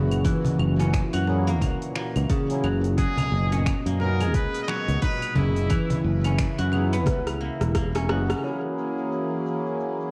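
A swung groove at 88 BPM in 4/4 drives this warm, earthy organic downtempo fragment in F# mixolydian, cut from a longer piece. An electronic kick drum, deep and overdriven, pairs with a deep house kit of claves, finger snaps, metallic hats, rim click and shaker, its hats, percussion and snare softened by low-pass filtering, while a woody cajon with faint snares sits distant in the background until about 7.2 s. Up front, a growly fretless electric bass sustains low notes under a smooth, detuned sawtooth pad that pumps with the kick, and a guzheng rings out silvery, fingerpicked arpeggios through a delay. A close-miked, reedy harmonium breathes in at 1.3 s, and from 3.0 s to 6.0 s a muted trumpet takes a brief, forceful jazz-style solo with vibrato and tape echo, set back in the room. A very quiet bronze singing bowl rings with slow beating throughout, a drum fill leads to a band accent near 8.3 s as the chords return to F#7, and the whole mix carries an echo-chamber reverb and the drifting warble of worn cassette tape.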